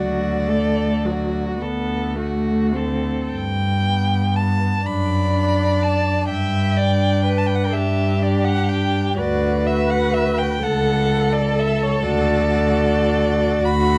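A single first violin carries the melody up front, its warm tone shaped by vibrato and expressive portamento and topped with a smooth upper register between C#5 and B5. This slow, romantic string quartet movement in G major moves in a lilting 6/8 at 41 beats per minute, counted in dotted quarters, with uneven beats and free rubato that give it a lyrical, serene mood. Beneath the melody, a second violin sings a rich, even second line from a more distant position. A dark, woody viola fills in the accompaniment, while the cello anchors the bass close and up front with a rich, smooth sound. The opening phrase is restated from 3.3 s, its harmony moving from D through G, D/F#, G5, D and A/C# and back to D. Close, detailed microphones and a touch of light reverb frame this excerpt from a longer piece.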